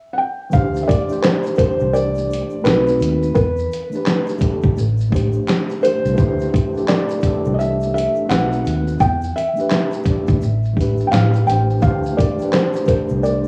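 Lo-fi hip hop at 85 BPM with a swung 16th feel, reflective and melancholic, this excerpt opens with a soft, felt-muted upright piano melody alone, its action noise audible through a cassette-tape haze, low-pass filtering and tape echo. At 0.5 seconds a mellow, clean tine electric piano, a dark, round, foam-muted electric bass and a gritty, compressed sampler-style drum kit with a thumpy kick, fat snare, handclaps, hi-hat and shaker enter, along with a grainy, very quiet egg shaker. The band cycles through Dsus2, B7b9, Em7 and A7sus4 beneath a moderate spring reverb, giving the whole an intimate, home-recorded cassette character.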